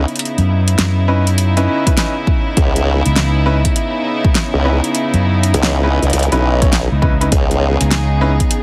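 A wobbling formant-sweep wobble bass, sawtooth and sine tones with chorus and tube saturation, sits up front in this playful, gritty glitch hop excerpt at 101 BPM in C# minor, with swung 16ths over a C#m9 chord. A growly fingered electric bass fills the low end beside a pop drum kit of fat snare and metallic hats, and a punchy electronic kick enters at 1.9 seconds. Brilliant grand piano stabs with tape echo and a reedy, gut-string studio string section with light vibrato both pump under sidechain, the strings carrying 12-bit sampler grit, within a heavily compressed radio sound and light reverb.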